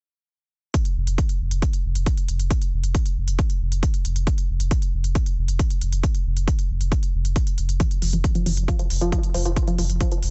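Dry and dark-topped, this short excerpt of driving, hypnotic peak-time techno runs at 136 BPM in a straight 4/4. A heavy, layered electronic kick drum sits up front with smooth electronic hi-hats from 0.7 seconds, and a deep, round sine sub bass on F1 joins at 1.0 seconds, low-pass filtered and pumping under the sidechain. At 7.8 seconds a tight sequenced synth riff around F3 arrives, its detuned sawtooth plucks evolving through chorus, delay and sidechain pumping.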